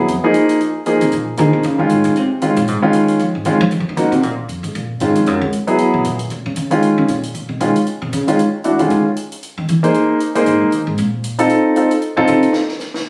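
An upright bass takes the solo from the start, its pizzicato gut strings sounding woody and thumpy, placed up front and roaming between C2 and F3. This is a moody, smoky stretch of small-group jazz in the swing and bop vein, cut from a longer piece, moving at a brisk 231 BPM in 4/4 with a swung eighth-note feel in Bb minor. A clear baby grand piano accompanies close and intimate, its action noise audible, voicing colorful chords such as Bb9, Gbm69 and rootless Bbm9 before shifting through Dbadd9, Eadd9 and Cm7b13 and landing on F7. A compact cocktail kit sits low in the mix, its dry hi-hat and high-tuned snare keeping a light presence from 0.1 seconds until 13.0 seconds. The room sound comes from a phone in the room, with a moderate studio reverb adding a natural, lived-in air to the close-up bass and piano.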